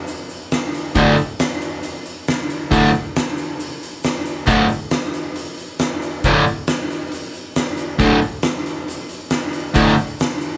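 Garage rock at 136 BPM in a straight 4/4, this rowdy, raw excerpt from a longer piece pairs an up-front, oversized, low-tuned acoustic kit (boomy kick, fat snare and hi-hat in a bright, pumping stone room) and a very quiet, grainy egg shaker with a double-tracked, overdriven hollow-body electric guitar that enters at 1.0 s, picking a low, up-front riff over a D5 chord, all captured live in one room with moderate reverb and a dulled top end.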